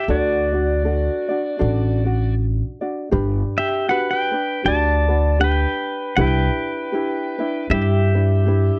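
Dreamy and languid, this short Hawaiian excerpt at 79 BPM in 4/4 with a gentle swing moves from D major into G major at 3.1 s, as an up-front electric pedal steel guitar carries the clean, compressed melody with fingerpicks, slide, volume swells and slapback echo over a light, thumb-plucked acoustic ukulele and a woody, thumpy upright bass on gut strings, all captured in a dry, close 1970s-style studio sound.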